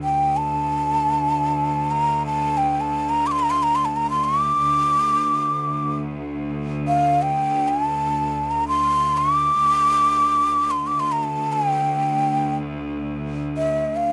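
Unmeasured and in free time, this short excerpt from a longer Turkish makam ensemble piece unfolds with a melancholic, longing mood. A breathy, hollow ney carries the melody from start to finish, its end-blown reed cane tone marked by vibrato, a crisp attack and lifted highs, and it sits up front in the mix. Beneath it, a chamber cello section holds a bowed drone on a low D throughout, bright yet earthy, with light vibrato and an ensemble character. The ney rises as high as D6 while the cellos stay anchored far below, so the cane's airy voice stands clearly above the sustained strings. Close, detailed microphones and very little reverb give the recording an intimate, dry presence that brings out the grain of both parts.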